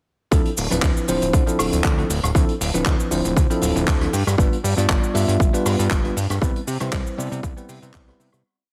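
A punchy, up-front electronic kick with a tape-warm, layered character drives this sleek, groovy nu-disco piece at 118 BPM in 4/4, holding a four-on-the-floor pulse with a light 16th-note swing in D dorian. Beneath it, a fat, saturated analog bass built from detuned sawtooth tones plays an octave-jumping line with a filter pluck and fast attack, sitting up front alongside the kick. A bell-like tine electric piano adds bright, clean dotted-rhythm chords in drop-2 voicings, colored by sidechain pumping and tape echo, moving from Dm9 to G7 at 4.1 seconds and Cmaj7 at 6.4 seconds. A distant, roomy acoustic kit played with bundle sticks fills out a disco backbeat with cabasa, closed and open hi-hat, rim clicks and handclaps. The whole short piece is a drop that begins fading out at 5.7 seconds, set in light small-room reverb with a heavily compressed, radio-like finish.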